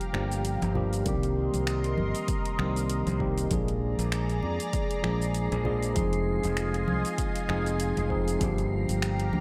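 A swung 4/4 groove carries this wistful, smooth sunset chillout clip, with punchy, overdriven electronic kick arriving at 1.1 s beneath a deep house kit of finger snaps, metallic hats and shaker, while very quiet congas with a hard-handed, thin-skinned attack add acoustic color. A bright, up-front fingered electric bass anchors the low end as a clean tine electric piano, filtered and echoed through a combo amp, comps over Gm7, Cm7, Bb7 and Fm7 changes, and a lush, thick detuned pad sustains slow-blooming chords through chorus and phaser. At 4.1 s an airy, breathy wind-like noise texture drifts in high in the background, and a plate reverb soaks the whole mix in a dreamy haze.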